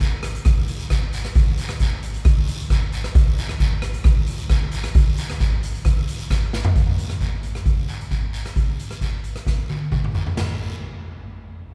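A straight 4/4 calypso groove carries this carefree, bouncy passage cut from a longer piece, driven by an up-front street-band drum kit of kick, snare, hi-hat, rim clicks, toms and crash cymbal, its boomy kick and medium-tuned snare sounding airy and polished. A raspy guiro sits distant behind the kit, and the drums break into fills at 6.5 seconds and again from 9.5 seconds. A wet cathedral reverb with a long 5.5-second decay fills the sound with the space of a church or concert hall.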